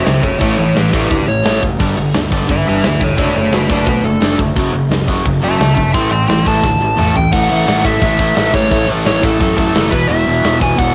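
A driving straight 4/4 pulse at 173 BPM propels this upbeat, rowdy punk rock excerpt in A mixolydian, cut from a longer piece and tuned slightly flat at A4 = 437 Hz. A tight metal drum kit sits up front with bright cymbals, a medium-tuned snare and a saturated, gritty edge, working crash, hi-hat, kick, snare and toms, and a drum fill from 6.6 to 7.3 seconds carries the music into a new section. Two overdriven, picked rhythm guitars play riffs throughout, an electric guitar tucked in the background and a hollow-body semi-hollow guitar beside it, while a bright fuzz-driven picked electric bass holds the low end. Over them, a dark, smooth overdriven lead guitar takes an up-front solo for the first 7.3 seconds. The chords move from A through G, D/F#, F#5 and A5 before landing on E5 near the end. The whole thing has the band-limited feel of a home cassette recording in a small room.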